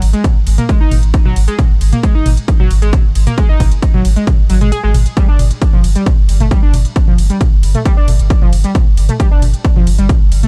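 Driving peak-time techno at 134 BPM in a straight 4/4, intense and dark, where a heavy, up-front overdriven electronic kick pounds over a deep, round sub bass pumping under sidechain and low-pass filtering, an overdriven drum kit adds smooth hats, ride cymbal and toms, and a gritty, screaming sawtooth-and-square synth lead riffs with vibrato through distortion, tube saturation, chorus and tape echo, all in a digital ambience, with the kick dropping out briefly from 4.7 to 5.2 seconds in this cut from a longer track.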